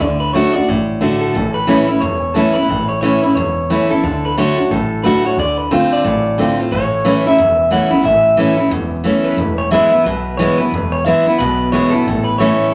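A rollicking, rowdy rockabilly passage, cut from a longer piece, opens with all three parts at once: a picked steel-string dreadnought acoustic guitar playing the accompaniment, a twangy electric guitar through a small old amp carrying the melody, and a pizzicato upright bass underneath. The acoustic guitar sits up front and is the loudest part, its bright steel strings driving a swinging feel. The electric guitar's slightly broken-up tone rings out in a fairly high register. The upright bass is mixed lower, giving a dark, woody pulse in its deep range until just before the close at 12.6 seconds. The harmony moves from D to A, back through D to a Dm7, then A and E before landing on A at 12.1 seconds, all heard in a moderate large-studio reverb.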